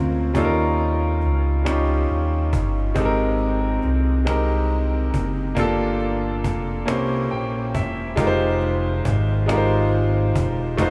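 A clear, up-front grand piano carries this slow six-eight R&B excerpt at 46 BPM, its yearning, late-night chords moving from Eb7 through Abmaj9 and Gm9 to C7b9, with a piano fill at 6.9 seconds before settling on Fm9 at 8.2 seconds. Beneath it, a dark, gliding synth bass with sawtooth and square-wave tones, vibrato and portamento sits close in the mix, while a snappy cajon with snares, played with hard hands, enters at 0.3 seconds. A huge ambient reverb soaks the mix in a dreamy haze over a small room ambience.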